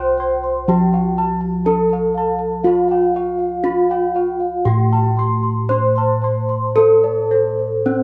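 Close, detailed microphones and a light reverb give this short recording an intimate, present sound. It is a serene, ceremonial Javanese gamelan passage in C pelog barang, moving at a slow 54-61 BPM in a straight 4/4, cut from a longer piece. Up front, a bronze metallophone struck with a wooden mallet carries the melody, its paired tuning producing shimmering beats and an airy, ringing tone. Alongside it, a second metallophone played with padded disc mallets spins mellow, soft arpeggios in a higher register, while a set of bossed gongs, also up front, adds round, beating arpeggios in the same range. Lower bossed gongs hold down the bass with a warm, boxy small-room resonance. All four parts sound together across the full 8 seconds.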